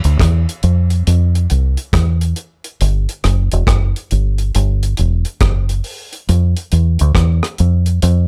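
At a relaxed 69 BPM in 4/4, with a 64% swing on the sixteenths, this short roots reggae clip from a longer piece feels laid-back and uplifting. A deep dub bass, fingered and foam-muted, sits up front with a round, punchy tone running from E1 to F2, while the dry, dark drum kit keeps hi-hat, tight kick and rim click close and smooth with a rolled-off top. Both parts play throughout the 8.3 seconds in a close, nearly reverb-free sound.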